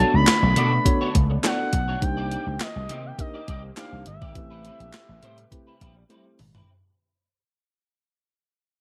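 A dry, close-sounding mix with little reverb opens this short cut from a longer early-eighties boogie funk track, funky and late-night in mood, moving at 103 BPM in a straight 4/4 and fading out across its full 6.7 seconds. Up front, a crisp 8-bit digital drum machine with a thumpy kick, medium-tuned snare, hi-hat, handclaps and toms carries gated reverb and a tape-tinged, small-room character, while a punchy, amped vintage slap bass sits just as forward. Above them, a smooth sawtooth portamento lead sings the melody with chorus, vibrato and slapback echo, and a mellow tine electric piano plays clean accompaniment. An electric guitar at the edge of break-up adds a compressed, picked riff through ensemble chorus, and a very quiet, brassy analog pad holds detuned, evolving chords with a soft attack and filter swell. The harmony moves from Bm9 to Cm9 at 2.0 seconds and Am9 at 4.4 seconds, and a drum fill closes the passage from 6.1 seconds.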